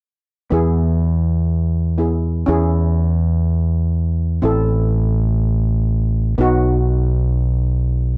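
Calypso in free time and E major, carefree and bouncy, cut from a longer piece where steel pan and overdriven fingered electric bass play together from 0.5 to 8.2 seconds. The steel pan, a double seconds played with medium rubber sticks, gives a metallic, shimmering, airy accompaniment up front, while the bass sits louder with a dark, round, punchy growl. The chords move from E through C#m/E and Am to B, in a dry, close small-room sound with a 1970s studio character.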